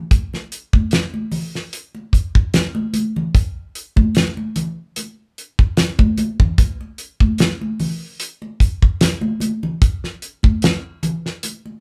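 A moderate studio reverb with a short half-second tail surrounds this live band in one room, giving the recording a live-room ambience. It is a short soul cut taken from a longer piece, moving at an unhurried 74 BPM in 4/4 with a gentle 54% swing on the sixteenths, and its mood is warm and smooth. A damped 70s drum kit sits up front from 0.1 seconds, its dry acoustic sound built on a fat snare, a tight kick and hi-hat, and it stops at 11.6 seconds. Congas, also up front and entering at 0.1 seconds, carry a bright, high-tuned, damped tone, with thin skins struck by hard hands in a small-room acoustic. The congas carry on a moment past the drums until 11.8 seconds, closing this single section.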